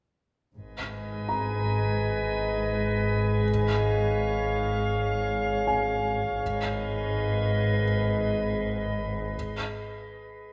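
Muted, con sordino cello and double bass sections enter at 0.6 s, holding a dark, veiled bowed bass under this ominous, eerie fragment of a suspense film score. A bright, glassy harmonics texture with drifting overtones, chorus and its own reverb soon floats up front in slow-attack sustained chords over a G#m to C#/G# and back to G#m progression, while a concert grand piano adds an intimate high texture with audible action noise. The strings and harmonics fall away at 9.3 s, the piano a moment later, into a brief break, all in a light reverb.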